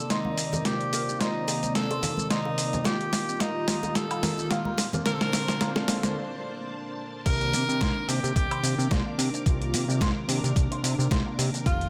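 Groovy and cosmic, this nu-disco passage at 109 BPM in C dorian swings lightly on a dusty, gritty, overdriven sampler-style kit. A distant, vibrato-laden tenor saxophone with delay carries the melody over round, chorused synth brass, lush string-machine chords with phaser and a filter sweep, and a very quiet, twangy envelope-filtered guitar riff, while ringing congas and bongos sit in the background before a short break at 6.2 seconds. At 7.3 seconds the drop brings in a fat, wave-folded analog bass and a thumpy electronic kick, with the brass and strings pumping under a moderate plate reverb as the chords move from Cm9 through F9sus4 and Bbmaj9 back to Cm9.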